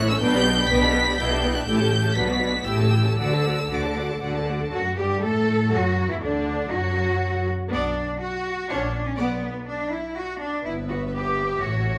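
A graceful, cheerful classical-period movement for string orchestra begins with every section playing together, moving quickly at 122 BPM in 3/4 with a rubato feel in D major. A clear, focused violin section carries the melody up to B6 over an even second violin line and a rich viola accompaniment with a smooth top, while an up-front cello section and a double bass section with light vibrato share the bass. A moderate recital hall reverb surrounds the ensemble, lossy compression artefacts colour the sound, and the harmony turns to F#m at 4.7 s in this cut from a longer piece.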